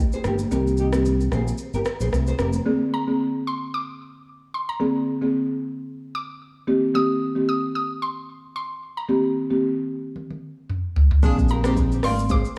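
Set in a small, lightly reverberant studio room, this smooth, hypnotic afrobeats excerpt opens on a brief swung groove: a produced electronic kit with a deep kick and silky hats sits up front beside a punchy fingered electric bass, while a full-bodied fingerpicked nylon-string guitar riff, bathed in lush chorus and analog delay, and faint, distant high-tuned congas add color. From 0.5 seconds until just before the end, a dry, buzzing marimba played with soft mallets carries woody, mellow accompaniment, and from 2.9 seconds a bright, round FM synth pluck with chorus and delay takes the melody over a Cm7 and Bb9 vamp. The drums return with a fill at 10.2 seconds. At 11.2 seconds bass and congas rejoin and a present pop-style horn section with light vibrato and delay enters, and the guitar comes back at 11.5 seconds for the closing moments of this cut from a longer piece.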